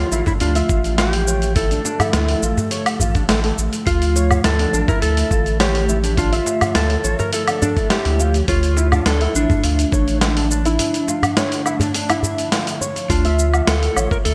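A straight 4/4 groove at 104 BPM drives this meditative, earthy organic downtempo piece in D harmonic minor. A gritty, compressed sampler-style kit with cabasa, hi-hat, snare and woodblock sits up front in gated reverb beside a thumpy electronic kick, while a cracking djembe with metal rattles stays in the background. A round sine sub bass anchors the low end, a boxy, thumb-plucked flamenco guitar plays arpeggios through analog chorus and delay, and a dark, slightly broken-up electric slide guitar carries the melody with digital delay. An ethereal, detuned pad holds chords with phaser and sidechain pumping, within a bright 1980s-style digital production that includes a break from 10.8 to 13.1 seconds.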